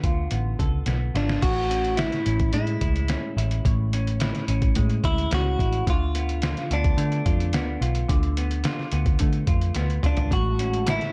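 Indie pop with a bedroom-pop haze, this dreamy, nostalgic excerpt at 108 BPM in A major pairs a pitched-down, overdriven sampler-style drum kit (thumpy kick, fat snare, up front) with a round, foam-muted picked bass and a fingered semi-hollow guitar whose lush chorus and warbly pitch drift colour the Dm6 and Amaj7 chords, while a twangy, direct-recorded clean guitar carries the melody from 1.2 s with slapback echo, a mellow sawtooth string machine with phaser and sub-octave cellos slips into the background at 10.3 s, and a crisp group handclap lands at 10.9 s, all within a dark, dry production.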